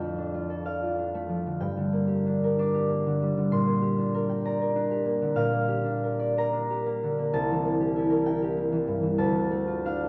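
Dreamy and graceful, this brief passage from a classical solo harp piece in 6/8 with uneven, rubato timing features a warm, thumb-plucked concert harp ringing up front across a span from C2 to D6, moving through Dm/F, Gm, Gm/Bb and C7 before arriving on Dm at 9.2 seconds, with the recording bathed in a cathedral's long, wet reverb and the warbling pitch drift of worn old cassette tape.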